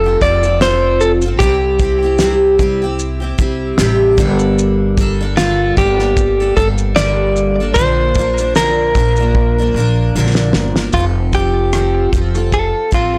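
A blown-out, overdriven recording with light reverb carries this heartfelt, easy-going acoustic pop passage cut from a longer piece, where a clean, compressed electric guitar recorded direct sings the melody through vibrato and tape echo over a bright, jumbo-bodied double-tracked steel-string acoustic guitar, a woody, growly pizzicato upright bass and a cloth-damped, thuddy drum kit with a fat snare, tight kick, rim click and shaker that enters at 0.2 seconds, all riding a gentle swing, with a drum fill from 9.3 to 10.9 seconds leading into a new section.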